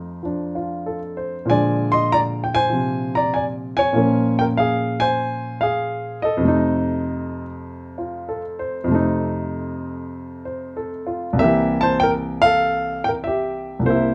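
A baby grand piano plays alone and up front for the full 14.1 seconds of this excerpt of relaxed, sophisticated solo jazz, swinging at 97 BPM in 4/4 in F mixolydian across a span from C2 to C6, its natural, short-sustained tone set in a dark, warm production with light reverb as the harmony moves from F7 through Bb7 and Bbm7 back to F7 before landing on C7 at 11.4 seconds.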